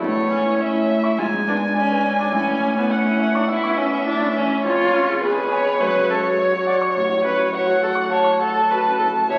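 Through the crackle of a very old 78 rpm record and a wet recital-hall reverb, this short cut from a quick, spirited and cheerful classical-period piano quartet movement at 103 BPM in 4/4, played with rubato, sets a focused violin melody with vibrato over a clear viola, a polished baby grand piano accompaniment and a smooth cello second line in the background, moving from A major into F# minor at 4.6 seconds.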